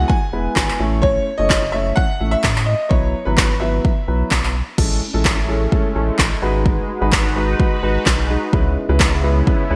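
An up-front deep house drum kit drives this summery, upbeat dance-pop track at 128 BPM in straight 4/4, its deep kick, woody snare, handclaps and crash cymbal layered and wrapped in gated reverb. Beneath it, a round, sine-toned sub bass holds sustained, fast-attack notes that pump with sidechain, while a dark, vintage baby grand piano carries the accompaniment with long sustain, a subtle chorus and the same pumping. A clear, open concert grand piano states the melody until 4.5 seconds, and at 4.8 seconds a detuned sawtooth pad with ring modulation, a filter swell and a slow attack enters to hold sustained, pumping chords. The harmony moves from E through A and Bsus4, then shifts to Amaj7, G#m7 and C#m7. Tuned to A4 = 438 Hz, the mix has light reverb and a bright 1980s-style digital sheen, and the passage is cut from a longer piece.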